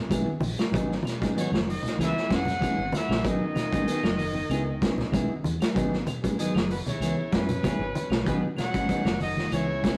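A driving, defiant afrobeat groove in G# minor at 96 BPM opens at once, with a gritty, punchy vintage drum kit up front, a round, dark fingered bass, clean picked arpeggios from a very quiet semi-hollow guitar, dark stabs from a mellow electric guitar, bright congas in the background and faint woody claves. At 1.4 s a distant, roomy trumpet takes the melody with vibrato, backed by a raspy, forceful alto saxophone kept very quiet and a bright, raspy baritone saxophone set back in the mix, all over an alternating C#m7 and G#m7 vamp. The rough rehearsal-room sound carries a moderate stone-room reverb and saturated character, and this excerpt is cut from a longer piece.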